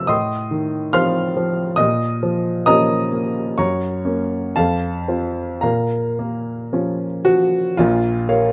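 A warm grand piano opens alone on an F7 over A, setting a brooding, passionate tone in Bb minor for this short romantic character piece, cut from a longer work. Moving in a flexible rubato around 54-71 BPM in 2/4, the harmony passes through Bb minor, Gb and F before returning to Bb minor, with the playing spanning from deep bass to bright upper register. The piano sits intimate and up front in light reverb, its natural tone carrying audible action noise across the 8.5 seconds.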